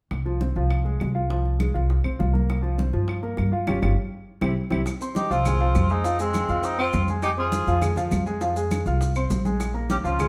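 A driving, straight 4/4 groove of thick-skinned congas, round low-tuned bongos and woody claves sits in the background of this fiery, sophisticated Afro-Cuban jazz excerpt, anchored by a dark, thumpy pizzicato upright bass and a grand piano accompanying up front. After a drum fill and band accent, grainy maracas join at 4.9 seconds, and from 5.2 seconds a mellow, distant cor anglais carries the melody with light vibrato while a clear, soft-attacked tenor saxophone plays a second line beneath it. A moderate stone room reverb gives the live ensemble a roomy, natural sound.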